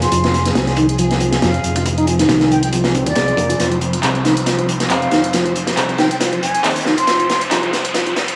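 A crunchy, saturated breakbeat kit with a tight kick opens this energetic, funky breakbeat excerpt together with the handclaps and hi-hat of a punchy analog drum machine, a fingered electric bass, a clean tonewheel organ riff through a stopped rotary speaker with tape echo, lush bowed strings holding chords in the background under gritty sampler texture, sidechain pumping and a filter sweep, and a distant, airy flute melody with telephone sound and tape echo, the passage building up in a hall reverb as a background riser enters at 0.9 s and a drum fill runs from 3.6 s.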